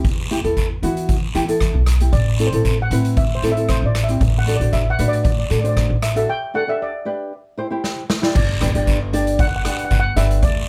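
A shimmering steel pan played with soft rubber sticks leads this bouncy, festive calypso excerpt at 116 BPM in G major, soloing until 8.4 seconds over thumb-plucked nylon-string guitar sitting up front, woody, thumpy pizzicato upright bass, a boomy, airy street-band drum kit with dark cymbals and a fill from 7.8 seconds, and a raspy guiro, all captured close and dry as the chords move from Em through Am, D/A, Gsus2 and Cadd9 to land on G.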